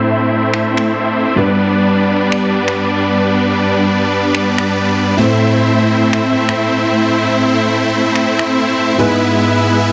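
Set in a moderate digital room, this anthemic, emotional festival progressive house excerpt at 126 BPM in A minor is led by huge, brilliant, detuned supersaw chords up front, colored by cassette tape, low-pass filtering, tape echo and a filter sweep across their full length, over a dark, worn, boxy grand piano with tape echo, a clear, bowed studio string section with vibrato sitting low-passed in the background, and tape-warm electronic finger snaps entering at 0.5 s and stopping at 8.5 s, as the harmony moves from Am to G and back before landing on E/G#.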